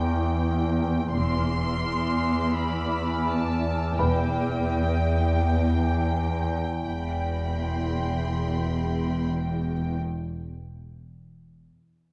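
A dark, reverberant concert-hall wash opens this tense, uneasy cinematic fragment in free time, where a lush violin section sings high over a focused cello line, an up-front sweeping drone with warbling overtones, a very quiet piano texture that stops at 6.9 seconds, a rich double bass section entering at 1.1 seconds, and an intense upper violin layer, all settled on E minor in E phrygian.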